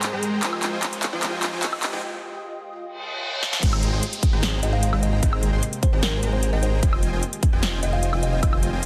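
In half-time 4/4 at 150 BPM, this euphoric, playful future bass cut in Ab major opens with a build-up: a punchy big-room kit of snare, metallic hats, handclaps, woodblock and crash drives a filter-swept, huge supersaw riff with sidechain pumping and digital delay, over a very quiet shimmering pad on Fm9 and background risers and a reverse cymbal. The harmony moves to Abmaj9 at 3.4 seconds, and at 3.6 seconds the drop lands as an up-front electronic kick and a thick, detuned saw bass with chorus and pumping enter. At 4.6 seconds a woody, plucked kalimba melody joins with dub echo, all set in light reverb under a dense, heavily limited master.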